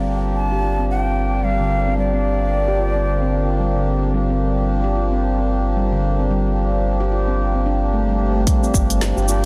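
The recording has a dense, heavily limited modern sheen with light small-room reverb, and it is cut from a longer piece of meditative, mystical organic downtempo with a gentle swing over a single minor-seventh chord. A round sine sub bass sits up front and pumps to a sidechain. A reedy, nasal hand-pumped harmonium breathes through its accompaniment, also pumping and softened by a low-pass filter and tape echo. A ringing stainless-steel handpan, played with the fingertips, spins dark, smooth arpeggios through a filter sweep and tape echo, while a very quiet, warbling, detuned vintage analog pad holds sustained chords with chorus. From 0.4 to 3.8 seconds, an airy, close-miked bamboo bansuri sings the melody with unsteady vibrato and a soft attack, trailed by tape echo. At 8.5 seconds, a deep, layered electronic kick and a deep house kit with woody snare, smooth hi-hat and shaker arrive briefly in a small-room ambience.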